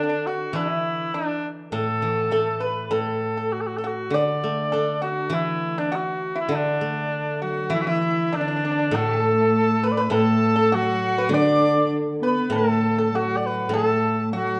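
Festive yet graceful, this excerpt of Chinese traditional chamber music moves at 100 BPM in a straight 2/4 in D gong mode, with a mellow cor anglais singing the up-front melody over a dry, fingerpicked pipa and a ringing, silvery steel-string zither, before a woody bowed cello and an airy, buzzing bamboo dizi join the second lines at 7.4 seconds, all set in a wet recital-hall reverb with a dark, warm production.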